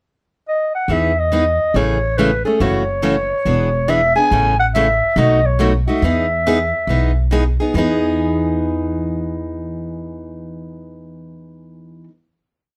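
A four-to-the-bar picked acoustic guitar, short and accented on two and four, pairs with a thumpy, woody pizzicato upright bass playing a two-beat root-and-fifth pattern to give this brief acoustic string swing tune its charming, swinging lilt. A growling clarinet opens with a pickup at 0.5 seconds and carries a motif-based melody in period phrases, its raspy subtone colored by scooped notes and light vibrato. The clarinet finishes at 7.3 seconds, leaving the guitar and bass to ring out a final chord until about 12 seconds, all captured with close, detailed microphones and light reverb.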